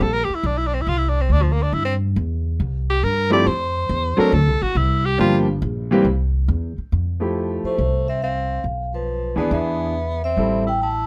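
An edgy, punchy tenor saxophone takes a forceful solo full of vibrato and scooped notes for the first 6.9 seconds of this playful small-group swing and bop jazz at 139 BPM in F major, over a woody, thumpy pizzicato upright bass on gut strings, joined at 3.3 seconds by clear concert grand piano accompaniment with deep bass, while a mellow, ringing soft-mallet vibraphone carries the melody from 7.7 seconds, all caught in a close, dry, detailed recording.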